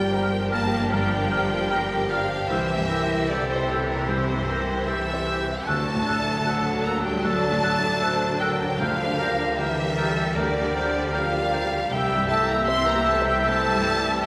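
A deep church reverb surrounds this short cut from a longing, bittersweet orchestral film score, which moves with a freely breathing rubato pulse. A rich, expressive violin section carries the melody with vibrato, while a second, smoother violin section, a clear but distant oboe, a roomy clarinet, and an airy flute section set high in their range trace second lines in the background. A mellow French horn section holds sustained chords beneath, and an even viola section and a felt-muted upright piano, intimate and soft with audible action noise, fill out the accompaniment. A bright concert harp rings out thumb-plucked arpeggios very quietly, and lush cello and double bass sections anchor the bass, the cellos adding portamento. Soft-malleted timpani with a round tone are barely audible, touching in at 0.0 seconds and again at 8.8 seconds as the harmony passes through Gm7, C, D and Gm7/D before settling back on C.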